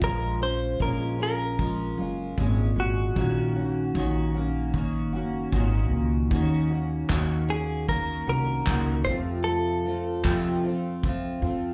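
This excerpt sounds like a live club gig heard through the venue's PA, with light club reverb around the band. It is tender, reflective acoustic pop in Bb minor at 76 BPM in 4/4, with a gentle swing on the sixteenths, moving through Bbm7, Gb6/Bb, Ebm7 and F. Up front, a clean, compressed electric guitar, picked and recorded direct with a slapback echo, carries the melody between Gb4 and C5. Beside it, a picked steel-string acoustic guitar, double-tracked with a warm auditorium tone, fills out the accompaniment, while a dark, full-bodied nylon-string guitar plays thumb-plucked arpeggios in the background. A woody pizzicato upright bass sits forward, and a vintage brush kit in a small room, with a tight kick, handclaps and a rolled-off top, plays until 11.2 s; a jingly, close and dry tambourine joins in the background from 7.1 to 10.4 s.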